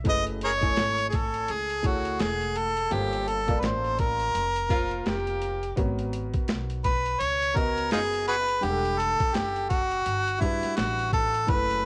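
A dark, boxy grand piano with audible action noise opens alongside a woody pizzicato upright bass, setting a cool, swung jazz-hop groove that is cut from a longer piece. Gritty, pitched-down boom bap drums with a thumpy kick and a high-tuned snare join the mellow, up-front harmonica, which carries cassette-tape grit and analog delay and plays with vibrato, scooped notes and tongue slaps. A breathy tenor saxophone adds a brief subtone line from 4.7 to 5.8 s, before the harmonica takes a jazz solo from 5.8 s, all set in the studio ambience of a home cassette recording.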